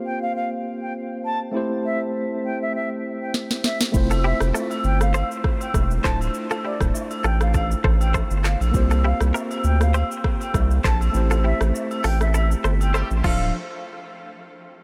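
Light reverb surrounds this mellow, smooth afrobeats excerpt, where an airy, distant flute melody with vibrato and delay sits over clean tine electric piano chords from the opening. After a drum fill at 3.3 seconds, an up-front electronic kit with a deep kick, sharp snare and handclaps arrives alongside a thick, saturated sub bass, a bright, twangy direct guitar riff with tremolo and delay in the background, and agogo bells and woodblock heard from a large room. A band accent begins at 11.1 seconds, and a tight, vintage horn section adds a brief second line at 12.9 seconds just before the cut.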